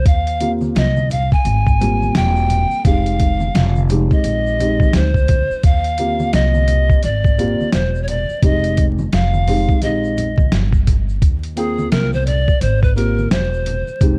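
A breathy, reedy bamboo pan flute and a woody, plucked upright bass open this smooth, warm jazz-hop excerpt together, soon joined by a gritty, pitched-down boom bap kit with a thumpy kick and medium-tuned snare sitting up front, plus soft-handed shaker and congas tucked in the background. A dark, boxy grand piano enters at 0.4 seconds, voicing lush extended chords such as Eb69, Abmaj13 and Fm9 in a swung groove. The flute, bright with vibrato and a gentle chiff, takes a solo from 11.2 seconds over a dry, dark and warm production dusted with vinyl crackle.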